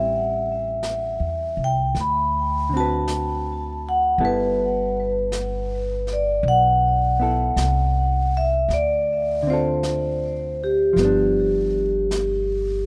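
A ringing, airy vibraphone carries the melody from the first moment, struck with medium mallets with its motor off and trailed by a tape echo, over a dark, clean hollow-body electric guitar fingering the accompaniment and a woody, growly pizzicato upright bass. This is a slow, swung jazz ballad with a late-night, romantic mood, heard as a short fragment cut from a longer piece. At 0.8 seconds a brush kit slips in, its medium-tuned snare and hi-hat sitting far back beneath the other parts. The vibraphone and bass sit up front, with the guitar a little further behind. The harmony moves from Am7 and D6 to a lingering G69, then on through Dm7 to G7. The whole take has the feel of a rough home demo, with a small room's reverb and a faint mains hum beneath the instruments.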